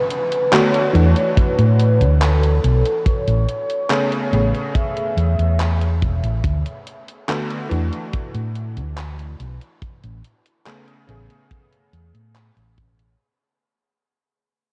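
Vaporwave with a woozy, nostalgic feel, this fragment fades out throughout as a velvety, detuned synth lead carries the melody with chorus, vibrato and cassette-tape echo until 6.0 seconds. A bright, clangy electric grand piano with analog chorus and delay provides accompaniment over a round, dark hollow-body bass with tube saturation, cycling through D6, E9sus4 and Amaj9. Gated 80s drum-machine handclaps and hi-hat sit behind a tight, up-front kick, all washed in a dreamy, reverb-soaked cassette mix.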